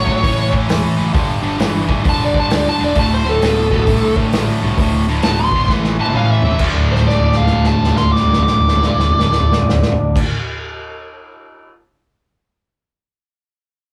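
Swung eighths in 4/4 drive this swaggering, gritty blues rock and southern rock cut from a longer piece, where a dark, distorted lead guitar carries a bluesy melody up front over a bright, double-tracked stack guitar riff and a punchy, overdriven fingered bass sitting in the background, while a vintage acoustic kit with a pumping small-room sound and rolled-off top plays fills at 5.7 s and 6.8 s before ringing on alone until 11.7 s, captured as a rough rehearsal-room recording with wet reverb.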